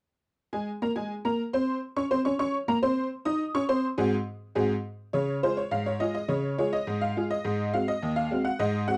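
A dry, close recording with a vintage 1970s studio sound puts a jangly, metallic tack piano up front in this cheerful, playful ragtime fragment, cut from a longer piece. In Db major at 104 BPM in a straight 2/4, the solo piano spans Eb2 to Eb6 and moves between Db and Ab7 chords. It plays from 0.5 to 9.0 seconds, shifting into a second section at 5.1 seconds, its boxy, percussive tone giving the tune an old-time bounce.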